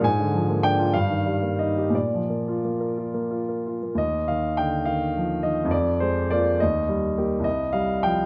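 Close, detailed microphones catch a polished, present grand piano with long sustain, set up front in a moderate recital hall reverb, playing a brooding, bittersweet romantic character piece in 6/8 with free rubato, ranging from C2 to Ab5 across this short excerpt cut from a longer work, where the opening phrase gives way to a second section at 4.0 s that turns through an Ebmaj9 chord.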